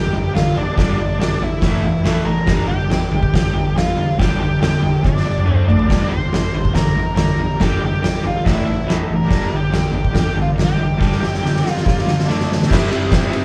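Raw and swaggering, this short cut from a longer garage rock piece drives along at 141 BPM in a straight 4/4, centred on G minor. An overdriven, double-tracked electric guitar picks a warm riff from the first moment, moving through G5, A5 and D5 power chords. A dark octave-fuzz lead guitar picks a melody above it until 12.3 seconds. The oversized, low-tuned acoustic drum kit sits up front with a punchy kick, fat snare and dark cymbals, sounding gritty and saturated in a bright stone room that pumps, with fills at 5.0 and 11.0 seconds. A vintage, buzzy combo organ enters very quietly at 5.9 seconds with sustained chords as the harmony shifts to G minor. The band plays live in one room, caught on cassette tape and washed in a wet studio reverb.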